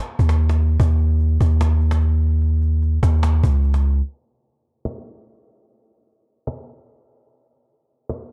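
A half-time 4/4 groove carries this ethereal, melancholic fragment of atmospheric cloud-rap: a snappy acoustic cajon with snares, heard in a live room, plays from 0.2 to 8.2 seconds beneath a deep, mellow, sine-toned 808-style bass that sits up front with a fast attack and long decaying notes until 4.0 seconds, when a filter sweep begins and runs to the end of the dark, low-pass-filtered production, which has little reverb.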